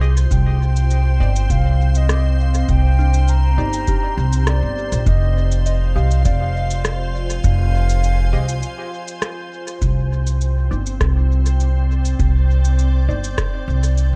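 A straight 4/4 pulse from a deep electronic kick drum and a produced electronic shaker and rim click, the latter trailing dub echo, drives this deep, spacious ambient dub excerpt, with a woody pizzicato upright bass sitting up front. A calm, evolving organ-like pad holds sustained chords through ensemble chorus and its own reverb, while a gentle FM synth bell plays arpeggios through chorus, phaser and tape echo, and a muted, detuned chord stab adds stabs in the background through phaser and dub echo. A breathy concert flute with vibrato carries the melody in dub echo until 9.2 s; after a break at 8.6 s the harmony moves from Cmadd9 and Fm7 to Csus2 at 9.8 s, where the bell stops.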